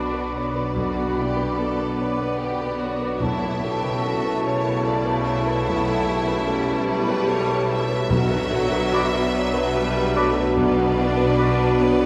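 A warm, deep-bass grand piano with long sustain anchors this sorrowful, moving cinematic cue in a slow, rubato 6/8, as a rich, focused, vibrato-rich violin section sings the melody over a lush second violin line, expressive background violas, smooth, even cellos and intense, clear double basses, while mellow French horns hold vintage-toned chords, a very quiet ringing harp plays fingerpicked arpeggios, an airy silver flute, a roomy cor anglais and a mellow clarinet add distant second lines, and hard-mallet timpani enter softly from 3.2 to 9.3 seconds, all bathed in the long reverb of a church.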